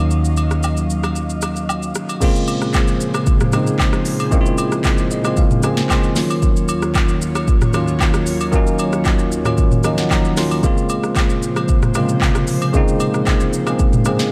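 Deep and late-night, this amapiano cut in Bb minor moves at 114 BPM, with a bell-like tine electric piano up front and an airy, breathy pad carrying sustained chorused chords that pump with sidechain as the harmony drifts between Ebm9 and Bbm9. A round, dark hollow-body electric bass sounds only until 1.9 seconds, while the electronic afro-pop kit drives everything with a deep kick, sharp snare, smooth hats, handclaps, shaker, rim clicks, toms and crash, and close, dry agogo bells and woodblock sit low in the mix. The electric piano adds fills at 4.8 and 9.6 seconds, all framed in light reverb and digital ambience.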